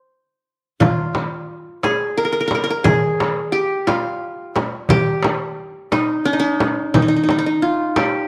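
A bright-edged, plectrum-plucked qanun sits up front, its triple strings ringing alone for the first 0.8 seconds of this longing, soulful Arabic maqam ensemble piece in a straight 6/8. At 0.8 seconds a crisp, high metal-shell darbuka, set distant in a large room, and a small frame drum played with soft hands, close and dry, enter together, both stopping at 8.1 seconds. The mix carries a moderate echo-chamber reverb with small-room ambience and some lossy compression artefacts, and the passage is cut from a longer piece.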